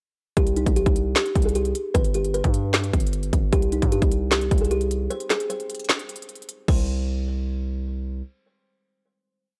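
This dry, gritty recording has little reverb, and it plays as a short, complete trap piece in C harmonic minor at 152 BPM in 4/4 with a half-time feel. From 0.4 s a soft, hollow kalimba plays a mellow, looping melody of short fingertip plucks, its top dulled by a low-pass filter and repeated like a sampled loop. Beneath it, a distorted 808-style bass sits up front, heavy, saturated and aggressive, with long sub-bass notes that follow the kick. The electronic drum kit is also up front and bouncy, with a hard-clipped kick, a woody snare layered with handclaps, crisp sixteenth-note hi-hats with fast rolls, and a crash cymbal. The brooding, eerie hook moves between C5 and G chords before a break at 5.1 s drops the harmony, and the drums stop at 6.8 s while the bass and kalimba carry on into a final note.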